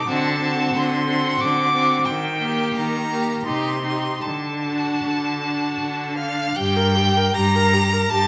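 Two bowed violins and a rich viola open this slow, melancholic string quartet movement in G minor, with the cello's focused bass joining at 0.1 seconds. The first violin carries the high melody with a clear tone and vibrato, sounding up front yet slightly distant, while the second violin plays a smooth, even inner line. Moving in a rubato 3/4 at 74-92 BPM through D7, Eb, Cm and D before settling on G minor at 6.6 seconds, this elegiac passage is bathed in the wet reverb of a recital hall and is cut from a longer piece.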